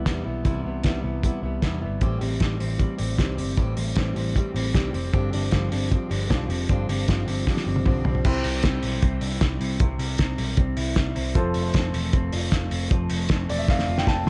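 A straight 4/4 pulse at 154 BPM drives this restless, wistful stretch of jangly indie pop, with a thuddy, cloth-damped drum kit sitting up front with a fat snare, tight kick, dark cymbals and gritty saturation, and drum fills at 7.5 and 13.7 seconds. A round, foam-muted vintage electric bass anchors the low end while an electric guitar through a small old amp spins twangy, slightly broken-up arpeggios washed in digital delay, and a full-bodied fingerpicked jumbo acoustic guitar fills out the accompaniment until 8.3 seconds. From there a dark, woody upright piano with audible action noise and long sustain takes over the accompaniment, adding a mellow fill at 13.3 seconds, all in a dark, warm production with light reverb and a rolled-off top.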